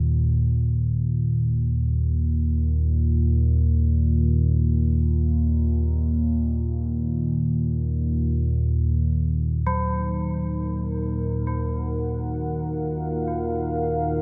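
A cavernous cathedral reverb surrounds this desolate, unsettling dark ambient drone, cut from a longer piece. An up-front analog drone of detuned sawtooth and pulse waves, with chorus, opens alone under a filter sweep. At 9.7 seconds a ringing bronze gamelan-type metallophone enters with delayed arpeggios, and at 9.9 seconds a deep, moody analog pad with a sub octave adds sustained chords.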